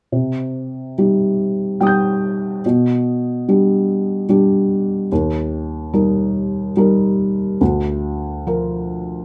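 A soft, intimate sound with light reverb frames this short excerpt from a longer neoclassical minimalist piano piece. A felt-muted upright piano plays solo from 0.1 to 9.2 seconds, its thick felt giving a mellow, muted tone that sits up front and close to the listener. The mood is wistful and private, set in C minor at 72 BPM in 3/4, with a rubato feel that lets the time breathe. The harmony moves through Cm, G/B, Eb and Bb/D, with the piano ranging from D2 up to G6. The piano is tuned slightly low, to A4 = 439 Hz.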